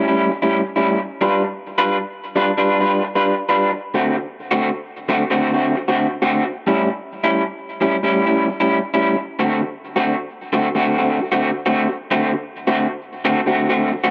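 Gritty and rollicking, this short blues excerpt swings at 88 BPM in D mixolydian, with a lone electric guitar playing through a small old amp from start to finish across its 14.1 seconds. The picked guitar sounds slightly broken-up, compressed and lo-fi, sitting up front with harmonic tremolo and digital delay, all inside a moderate spring reverb. It moves through A7, G7, D7 and A7 again before landing back on D7 at 9.4 seconds as a new section begins.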